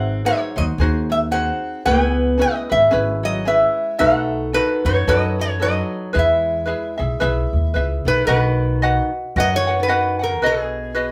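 Hawaiian excerpt at 112 BPM in E major with a dreamy, relaxed swing, where a metallic, nasal resonator slide guitar carries the melody up front over a picked steel-string acoustic's warm second line, a light fingerpicked ukulele accompaniment and a woody, growly pizzicato upright bass, the band playing live together in one room with moderate studio reverb as the chords move from G#7 through C#m7 and B7 to E before a new section begins at 8.3 seconds.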